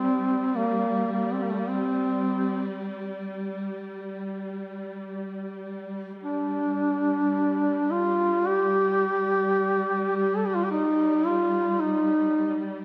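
A dark, punchy duduk sings a mournful Caucasian folk lament up front over a distant, bowed string section holding a soft-attack drone on G3, with the ensemble's vibrato and portamento adding quiet expression beneath. The solo line moves freely in rubato, its scooped notes, vibrato and smooth top carrying a solemn folk voice through a wet concert-hall reverb. This fragment of a longer piece ends with the duduk falling silent at 12.6 seconds, just before the strings' drone stops.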